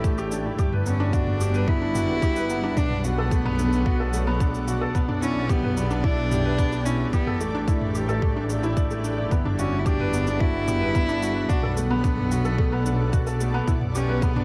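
A tight, tape-warm electronic kick sits up front at 110 BPM in a straight 4/4, joined by produced shaker and toms, driving this moving, cinematic piano-and-strings electronica in B minor through the whole 14.4-second excerpt. A soft, felt-muted upright piano with audible action noise plays an intimate riff through digital delay, while a close, sul tasto cello sings the melody with light vibrato and an airy bow, its line also echoed by delay. Beneath them a lush, bowed symphonic double bass section holds the low end with sidechain pumping, and a cloudy, evolving granular pad blurs into the background with its own reverb and pumping, all moving through A7sus4, Gmaj7, Bm7 and Em7/B in a dark, warm, lightly reverberant small-room mix.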